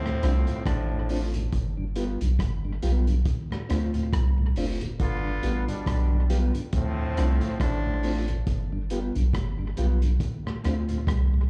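A brilliant, tight trombone section opens alongside a soft, round dub sub bass, carrying a second line with vibrato and punch that is colored by analog delay and slapback echo before it drops out at 8.2 seconds. This is a sunny, warm slice of roots reggae at 69 BPM in G mixolydian, with a swung sixteenth-note feel and a harmony that rocks between Dm7 and G7. The deep bass sits up front with a fast attack and sustained notes, while a vintage drum kit of kick, hi-hat and rim click sounds lo-fi and muffled, its punchy kick and rolled-off top passed through analog delay. A mellow tonewheel organ stays in the background with key click, vibrato and a slow rotary speaker, and a dark, clean, fingered electric guitar adds delay and slapback echo of its own. The whole band is heard as a live gig through the venue's PA, wrapped in club reverb, in a short cut from a longer piece.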